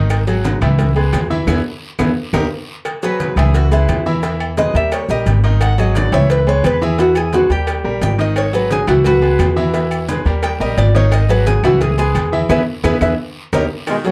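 A straight 4/4 salsa groove drives at 174 BPM in G# minor, a fiery, passionate fragment cut from a longer piece. In the background, low-tuned, thick-skinned congas, ringing agogo bells and timbales, woody claves, a tight, high-tuned cowbell, a raspy guiro and grainy maracas build a percussion bed. Up front, a thumpy pizzicato upright bass anchors the harmony, while a bright concert grand piano with brilliant, short-sustained chords supplies accompaniment over a repeating cycle through C#m7, E and D#. From 3.0 s a Cuban tres takes a solo, its picked double strings sounding metallic with some octave doubling, and band accents and drum fills punctuate the phrase endings. At 13.9 s, in the final instant, a punchy, smooth-topped trombone section and an edgy saxophone section with vibrato burst in. The production is dark, with a moderate studio ambience.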